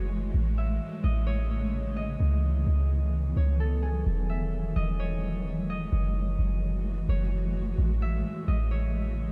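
Atmospheric cloud-rap with a half-time feel and a blissful, floating mood, this short excerpt drifts through lush seventh, ninth and eleventh chords from start to finish. A deep, boomy 808-style bass sits up front beneath a cloudy, detuned granular pad that blurs and evolves in its own reverb. A thumb-plucked concert harp carries the melody with a ringing acoustic tone, softened by a low-pass filter and trailed by delay, all under a light room reverb.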